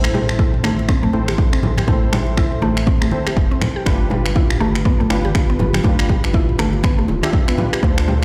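An overdriven electronic kick drum sits up front in this driving, earthy afro house passage, deep and layered, arriving at 0.4 s with a small room ambience around it. Beneath it, a smooth synth bass built from sawtooth and square waves holds the low end, while an electronic afro-pop kit adds finger snaps and toms, swung on the sixteenths. Very quiet, low-tuned bongos played with soft hands enter first, soon joined by congas struck with hard hands in the background. A woody, FM-style mallet pluck spins arpeggios through chorus and delay, and mellow analog keys with a sub octave and filter sweep add decaying stabs. A moody pad with slow attack, chorus and phaser hovers behind it all, and the pad, pluck, keys and bass all pump against the sidechain over a move from Am to G7, heard as if played through a big sound system in a bare stone room.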